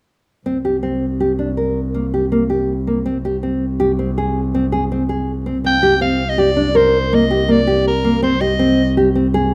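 This is a contemporary instrumental chamber piece in 7/4 at 162 BPM, cut from a longer work, with a hypnotic, restless mood in C minor. A fingerpicked nylon-string guitar sits up front with full-bodied arpeggios between Bb3 and Bb4, its finger squeaks audible, while a single bowed double bass holds a low C2 sul tasto with a soft attack and a pure, floating tone. The harmony moves from C5 to Ab/C, then shifts to C7sus2 and Abmaj7/C in the second section. At 5.7 seconds a raspy soprano saxophone enters as the solo voice, edgy and gritty with vibrato and a punchy, pop-style delivery, carrying the melody between Bb4 and G5 until 9.0 seconds. A wet recital hall reverb surrounds the trio.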